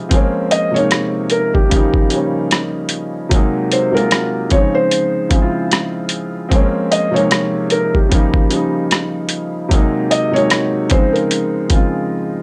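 Lo-fi hip hop in Bb minor at a relaxed 75 BPM with a light 16th-note swing, this nostalgic, melancholic section from a longer piece cycles through lush chords such as Bbm9, Eb9, Ab9 and Dbmaj7. A woody, open upright piano carries the accompaniment up front through a low-pass filter, while a felt-muted upright piano sings a soft, dark, intimate melody from 0.5 seconds, its vintage tone softened by filtering and plate reverb. A compressed, pitched-down boom bap sampler kit of hi-hat, rim click and thumpy kick adds overdriven 12-bit grit until 11.9 seconds, just before a brief break at 12.1 seconds, all within a dry, gritty hardware sound and a moderate room.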